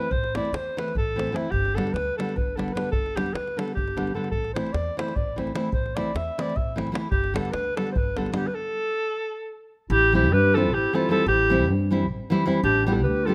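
Close, detailed microphones and light reverb give this fiery, restless Balkan wedding-band cut, taken from a longer piece, an intimate presence as it drives along in 7/8 at 301 eighth-note beats per minute, moving between A minor and G. Up front, a vintage-toned alto saxophone sings the classical-style melody with vibrato over a full-bodied, fingerpicked nylon-string guitar with audible finger squeak, a woody, thumpy pizzicato upright bass and a tight, dry davul. After a stop from 8.5 to 9.9 seconds, the davul has dropped out and a smooth-topped clarinet enters in the background with a second line as the harmony shifts to C over A and G over A.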